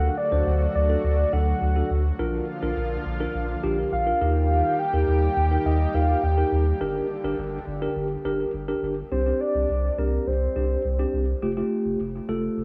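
Moderate spring reverb and a small room ambience frame an echo-heavy mix in this driving, nocturnal synth-pop excerpt at 104 BPM in 4/4, tuned to A4 = 441 Hz. A deep, dark analog bass sits up front beneath a mellow, clean tine electric piano heard through built-in speakers with dub echo, while a thick, detuned sawtooth unison pad with chorus and a slow attack sustains chords until 9.1 s. A soft octave-layered synth lead with a sub octave, vibrato, chorus and dub echo carries the melody until 11.1 s, as the harmony moves from D through Bb, Eb and Gm to Csus2 and Fadd9.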